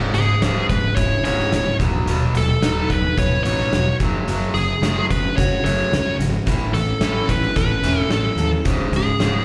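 This is a live club recording heard through the venue's PA, carrying a roomy reverb: a dark, angsty stretch of quiet-loud alternative rock in C# minor at 109 BPM, cut from a longer piece and moving through C#m, Badd9/D#, F#madd9 and Aadd9 before landing on C#5. A picked steel-string acoustic guitar with fresh strings and finger squeak plays arpeggios in the background. An overdriven semi-hollow guitar drives a bright riff, both of them touched with slapback echo, while a growly fuzz bass punches underneath. Up front, a dark, smooth lead guitar carries the melody with overdrive and slapback echo, and an oversized low-tuned drum kit enters at 0.1 seconds, gritty and saturated, with a punchy kick, a medium-tuned snare and hi-hat set in a bright stone room.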